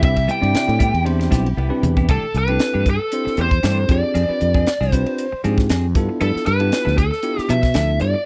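A dry, close 1970s-style studio sound frames this soaring, bright electric jazz fusion at 116 BPM in C major, where a dark, overdriven lead guitar through a small cranked amp solos for the first 2.1 seconds over a woody, bowed string section whose sustained chords stop at 2.0 seconds, capped by a fill from the crisp drum kit with its high-tuned snare and punchy kick, then carries the melody over a bell-like tine electric piano, a warm fretless bass, and compressed stabs from a semi-hollow guitar with subtle chorus.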